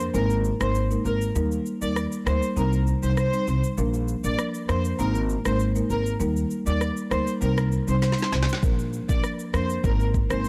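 A dark, close production with little reverb frames this bouncy, hypnotic dancehall excerpt at 99 BPM in a straight 4/4. An upright bass sits up front, its pizzicato gut strings thumpy and woody, while a marimba played with soft mallets adds a mellow, round accompaniment from a boxy small room. The afro-pop drum kit has an electronic, produced edge, with a deep kick, a woody snare, rim click and shaker, and a drum fill arrives at 8.0 seconds to close out the break. A studio violin section carries the melody in a lush, expressive ensemble, its bowed vibrato touched with delay. The harmony cycles through Absus2, Eb, Cm and Bb, lending the piece a looping, trance-like pull.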